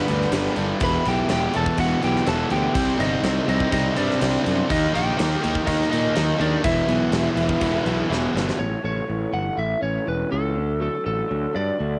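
Recorded at home onto cassette with a light reverb, this dark, brooding cut from a longer piece of quiet-loud alternative rock sits in E minor at 123 BPM in a straight 4/4. For the first 8.6 seconds, three riff guitars sit in the background: a biting, double-tracked overdriven guitar kept very quiet, a bright, compressed fuzz guitar with distortion, and an overdriven semi-hollow guitar with a hollow-body tone. Up front, a growly, punchy fingered electric bass with fuzz and overdrive holds the low end throughout, while a huge arena drum kit booms in a pumping hall with glittering cymbals, a fat snare and a thumping kick, ending its part with a fill. Over the top, a slightly broken-up, squeezed lead guitar with a cassette-tape colour carries the melody across the whole passage. At 8.6 seconds the drums and riff guitars stop and the music moves into half time over A and D chords, where a lo-fi guitar through a small old amp plays arpeggios with a subtle chorus.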